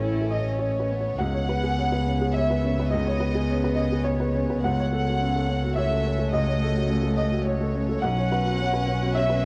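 Longing and fragile, this short cut from a longer neoclassical piece for piano and strings moves in a rubato 3/4 at 106 BPM in C# minor, with a chamber violin section carrying the intimate, smooth-topped melody over a woody, boxy upright piano, a lone cello's airy second line and a floating, pure string section in the background, and a dark bowed double bass up front, all softened by light reverb and the worn, warbling pitch drift of old cassette tape as the chords pass from A to C#m7 at 1.2 seconds, F#m/C# at 4.6 seconds and Bsus2 at 8.0 seconds.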